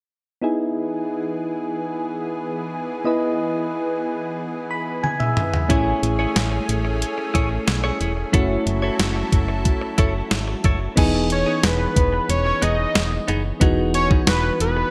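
1980s-style pop at 91 BPM in E major, uplifting and nostalgic: mellow, chorused electric-piano-like synth keys open over a lush, detuned unison pad. A thumpy 12-bit drum machine in gated reverb enters with a fill at 5.0 seconds, joined by a punchy, round FM bass and a clean, compressed electric guitar riff with subtle chorus and delay. From 11.3 seconds a fat sawtooth analog lead carries the melody with vibrato and delay, inside a bright digital production with moderate plate reverb.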